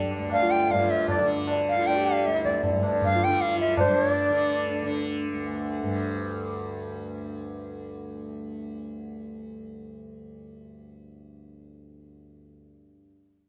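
In a straight 3/4 at 156 BPM, this solemn, longing Hindustani classical excerpt rests on a buzzing, shimmering tanpura drone that sounds up front for the full 13.0 seconds, while a distant, high-tuned tabla with a short ring taps out the cycle until 3.9 seconds, an airy, reedy bamboo bansuri carries the tongued, vibrato-laden melody up front until 4.9 seconds, and a dark, woody bowed sarangi adds a distant, gliding second line with portamento and sympathetic-string resonance, all captured by close, detailed microphones in light reverb.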